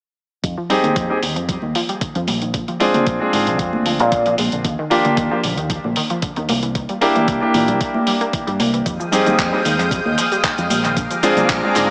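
A clear, intimate grand piano sits up front in this sleek, sensual nu-disco excerpt, its natural tone carrying audible action noise through sidechain pumping, a low-pass filter and dub echo. Underneath, a bright fingered electric bass with an envelope filter drives the groove at 114 BPM in a straight 4/4, moving through F dorian changes of Fm9, Bb7, Ebmaj9 and C7. A punchy unison pluck of detuned sawtooths, edged with a noise layer and ring modulation, plays arpeggios through cassette tape coloring, sidechain pumping and dub echo. The rhythm comes from a gritty, compressed soul sampler-style kit with handclaps, hi-hat and shaker, a thumpy, tape-warm electronic kick, and soft-handed, high-tuned congas that stay in the background. At 8.9 seconds a lush, detuned pad with a slow attack and chorus swells in with sustained chords, and the echo-heavy mix has a small-speaker, digital-ambience character.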